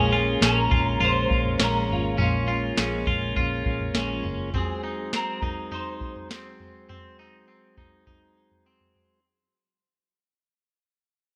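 A bright 1980s-style digital production bathes this hazy, ethereal dream pop excerpt in a moderate plate reverb, and the whole passage fades out over its 9.2 seconds. At 102 BPM in a straight 4/4, a soft vintage rhythm box enters at 0.4 seconds with a deep kick, crisp snare and toms, its analog tone re-recorded in a small room. A semi-hollow electric guitar carries the melody with a picked, hollow-body voice under ensemble chorus. Up front, a twangy, scooped electric guitar plays arpeggios through subtle chorus and delay, while a tonewheel organ holds smooth sustained chords with a touch of key click and a stopped rotary speaker. A clean electric guitar sits in the background with tremolo and lush chorus, and a dark, round, foam-muted fingered bass anchors the low end, both dropping out around 4.5 seconds as the harmony moves from Bbm7 to Ab7.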